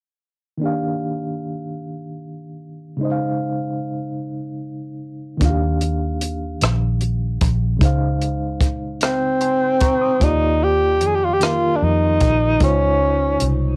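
A reedy, worn electric piano opens at 0.6 s, slightly out of tune and lightly overdriven, with a medium tremolo and a cassette-tape coloring, trading Ebmaj9 and Dbmaj9 chords in a tender, intimate slow six-eight R&B groove at 50 BPM in Eb major. At 5.4 s a dark, round, foam-muted electric bass and a compact, dry cocktail drum kit with a punchy kick, hi-hat and rim click join in. At 9.0 s a growling, breathy tenor saxophone takes the melody up front with raspy subtone, scooped notes and jazz-style vibrato, all in light reverb with a homemade cassette character in this fragment cut from a longer piece.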